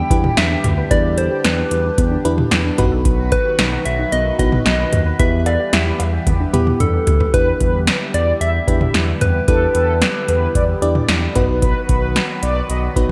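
A nocturnal, driving synth-pop passage in E minor at 112 BPM, this is cut from a longer piece and moves in a straight 4/4 over chords shifting between Em7, B and Em. An electro analog drum machine sits up front with a deep kick, punchy snare, metallic hats, cowbell and toms, all bathed in gated reverb, and a drum fill from 6.3 to 7.3 s leads into the second section. A smooth synth bass holds the low end while a swirling phased analog pad sustains detuned sawtooth chords, and a warbling FM electric piano adds mellow accompaniment. A round, keys-like struck synth lead carries the melody with chorus, tremolo and digital delay, joined until 7.3 s by a soft pluck playing dark arpeggios in the background. From 7.3 s a brassy, detuned synth brass line with vibrato and a filter sweep enters as a second voice, all set in a moderate plate reverb with a bright 1980s-style digital sheen.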